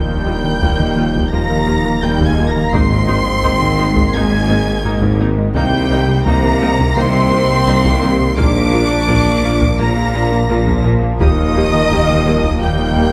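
Lush, expressive violins sing a high melody over a second violin line, opening a vast, relentless excerpt of hybrid orchestral and electronic film score at 85 BPM in a straight 4/4. Beneath them, a mellow French horn section, a very quiet trombone section and an evolving, detuned wavetable pad hold sustained chords that move from Ebadd9 through Abadd9, Cm7 and Bb before returning to Ebadd9. The low end stacks a distant, intense cello section, a focused double bass section, a close-miked tuba and a thick, saturated sub bass, while a rubbery, hollow square bass riff enters at 0.1 seconds. A smooth viola section adds accompaniment and a round, tine-like synth pluck ripples through arpeggios from 0.3 seconds, with a very quiet taiko ensemble struck with heavy sticks joining at 0.6 seconds. A wet scoring stage reverb lends the orchestra a spacious, cinematic depth.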